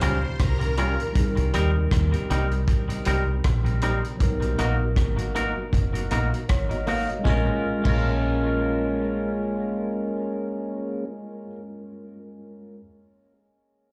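Lovers rock reggae with a longing, smooth mood, heard as a short excerpt cut from a longer piece with a relaxed swing in its sixteenths. A shimmering string-machine violin line opens the clip with a soft, sustained attack and ensemble chorus, then drops out at 1.1 seconds. Underneath, a mellow tine electric piano plays accompaniment alongside a round, dark tonewheel organ with key click and slow rotary speaker that sits in the background, while a clean, twangy electric guitar adds compressed stabs touched with tape and slapback echo. A deep, foam-muted dub bass sits up front with a punchy, fingered tone, joined by a vintage acoustic kit with dark cymbals, a punchy kick, rim clicks and a rolled-off top that plays until 8.0 seconds. The harmony moves through lush seventh and ninth chords, shifting into a new section at 7.2 seconds, and the whole band sounds like a live gig heard through the venue's PA, with club reverb and small-room ambience.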